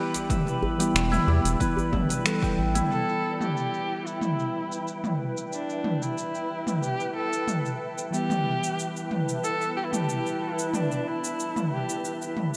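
A straight 4/4 pulse at 92 BPM drives this hypnotic, earthy slice of organic downtempo in E minor pentatonic, where a punchy electronic kick, a tight, cracking djembe and a round, wave-folded analog bass with tube saturation all drop out by 2.9 seconds, while a deep house kit of cabasa, finger snaps, dark low-passed hats and toms carries on under gated reverb and a filter sweep. Muted, felt-like synth keys with chorus and delay sit beneath a blurred granular cloud pad on sustained chords, both pumping with the sidechain, and a shimmering hammered santur plays arpeggios until 6.2 seconds. From 2.9 seconds a dark, bowed kamancheh carries the melody up front with expressive vibrato and portamento, all set in a lush hall reverb with a bright 1980s-style digital sheen.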